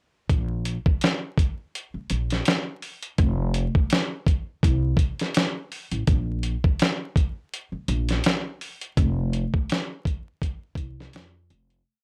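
Lo-fi hip hop at 83 BPM with a gentle 16th-note swing, reflective and nostalgic, pairs a dusty soul sampler-style drum kit playing a slumped, off-grid beat of thumpy kick, medium-tuned snare and hi-hat, compressed and re-recorded in a small room, with a woody pizzicato upright bass tracing a sparse line with muted ghost notes, slides and chromatic approach notes through transformer saturation, both up front in a dry, gritty recording laced with vinyl crackle that fades out from 9.0 seconds.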